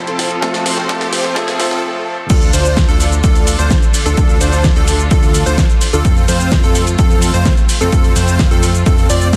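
Emotional and powerful, this festival progressive house excerpt, cut from a longer piece, opens on a build-up where a clear, worn grand piano with short sustain plays accompaniment, pumping under sidechain with delay, beside a huge, detuned supersaw riff that is thick with a sub octave, low-pass filtered and touched by vibrato. Very quiet, smooth symphonic strings hold bowed chords throughout. A background riser and a drum fill from the layered pop kit carry the music to a brief break at 1.8 seconds. At 2.3 seconds the drop lands and the piano stops, as a catchy square-wave pluck enters with unison arpeggios, its noise layer and filter sweep echoing through delay, over a fat, evolving analog bass. The punchy, overdriven electronic kick sits up front, re-recorded in a large room, while the kit adds a full-bodied snare, metallic hats, shaker and crash. Light reverb surrounds a dense, heavily limited modern master.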